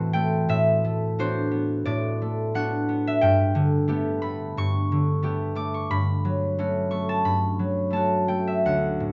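A concert harp plays alone, its fingerpicked strings sounding warm and ringing from up front in this gentle, mysterious classical excerpt for solo harp. The playing moves with a rubato feel over a 4/4 metre, spanning the instrument's range from D2 up to D6. The harmony drifts from D13/A at 0.5 seconds to Gadd9 at 3.2 seconds and then to A69/G at 5.9 seconds, lending the passage an unresolved, dreamlike colour. A light reverb surrounds the acoustic harp, and the whole fragment lasts 9.1 seconds, cut from a longer piece.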